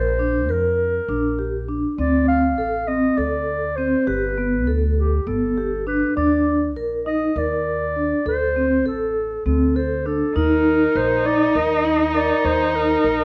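Heard through worn, warbling cassette tape with a drifting pitch and a moderate recital hall reverb, this short cut from a longer contemporary chamber piece moves in a pensive yet urgent 7/8 at 201 BPM, counted in eighths. A mellow, distant clarinet carries the melody over ringing, metallic vibraphone arpeggios with fast motor vibrato, while a woody, growly pizzicato upright bass anchors the low end beneath shifting harmonies from Bb through Dm7 and Gadd9. At 10.4 seconds a rich, focused bowed cello joins with a smooth-topped second line on Eb as the music moves into a new section.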